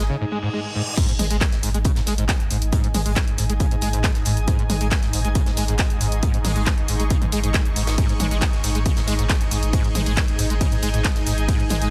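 Driving peak-time techno at 137 BPM in straight 4/4, tuned slightly sharp to A4 = 441 Hz, with a relentless, dark mood in this short cut from a longer piece. A brief break opens on a squelchy, screaming sawtooth acid riff with distortion, chorus, tape echo and sidechain pumping, over a round sine sub bass, a cloudy granular pad with built-in reverb, a very quiet swarming, nasal drone, and an electronic reverse cymbal sounding from 0.3 to 1.0 seconds. At the drop at 1.0 seconds, a heavy, up-front layered kick and a large-room electronic kit with claps, hats, shaker, ride, crash and pumping toms arrive, joined by a very quiet acoustic rock kit's hi-hat and medium-tuned snare, all within a dry, dense, heavily limited master.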